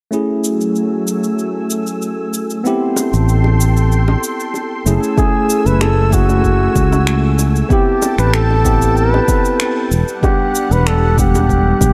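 Light reverb and a digital ambience frame this dark, warm production, a relaxed and wistful sunset chillout excerpt in straight 4/4 taken from a longer piece. A clean tine electric piano, heard through a combo amp with a low-pass filter, digital delay and filter sweeps, plays the accompaniment over a lush, thick pad of detuned sawtooth and square waves with chorus, slow attack and long release, while layered electronic cabasa and finger snaps tick along from the start. Tight, high-tuned bongos played with soft hands enter very quietly at 3.0 seconds, and a warm, direct fretless electric bass joins up front at 3.1 seconds. At 5.2 seconds a punchy, layered electronic kick drum arrives with a solo trumpet in a bucket mute, veiled and raspy with vibrato, scooped notes and a growling jazz edge, its lines trailed by digital delay. The harmony drifts through lush minor ninth chords, moving between F#m9 and Am9 before settling on Em9.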